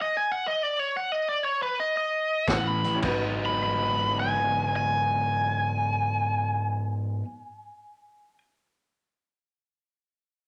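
A biting, overdriven lead guitar opens this smoky, mournful electric blues shuffle in G# minor, playing its picked melody up front while the band holds its stop and the tempo slows. At 2.5 seconds a crunchy overdriven guitar riff arrives with a very quiet, woody upright bass, and the harmony moves from an A7 onto G#m7. A vintage drum kit, with a punchy kick and dark cymbals, plays only until 3.2 seconds. A bright upright piano joins in the background at 2.8 seconds, intimate and polished, with its action noise audible and short sustain. The piece swings in 4/4 at 105 to 128 BPM, sits in a large studio reverb, and is cut from a longer performance.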